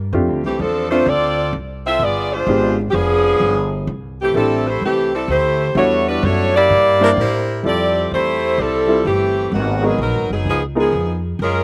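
The sound is dry and open-air, with the instruments heard plainly and little reverb around them. This joyful, energetic big band swing moves at 128 BPM in 4/4, with a lilting swing on the eighth notes and tuning set to A4 = 438 Hz. The saxophone section carries the melody from 0.5 seconds, close-miked and up front, its ensemble tone given a slapback echo. An intimate concert grand piano accompanies with audible action noise and a deep low end, also touched by slapback echo, while a woody, growly pizzicato upright bass supplies a thumpy foundation from the very start. The harmony passes through F6, G7b9 and C6 before shifting at 7.6 seconds to colours such as Fmaj9, Abm9 and Db13. Cut from a longer piece, it closes at 11.6 seconds with bass and saxophones still sounding.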